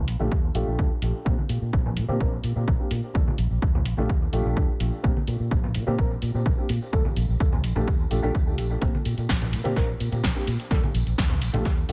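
Feel-good and funky, this filtered disco house excerpt at 127 BPM in 4/4 rides a filter sweep through its full 11.9 seconds, built on an up-front, tape-warm electronic kick, a punchy analog drum machine supplying hi-hat and snare with pumping, delayed hats, a bright, amped fingered electric bass with an envelope filter and low-pass pumping between Bb1 and Bb2, background tambourine and congas played with hard hands and treated with compression, saturation, delay and a low-pass filter, and a dark, boxy baby grand piano with audible action noise, phaser and delay that moves between Ebmaj9#11 and chordless gaps before closing on Eb5, set in a dry, echo-heavy mix whose top end stays dull.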